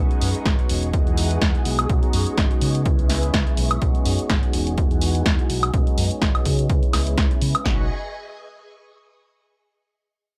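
Swathed in digital ambience, this funky, feel-good filtered disco house excerpt in B major grooves at 125 BPM with a 16th-note swing, as a mellow, brassy synth with chorus and tremolo and a swirling, phased string machine hold sustained B69, Emaj9 and C#m7 chords under a filter sweep and sidechain pumping, while a dark, round fingered electric bass and two punchy analog drum machines, one up front with kick and snare and the other adding hi-hat, snare and woodblock, drive the beat until the parts drop out near 7.9 seconds.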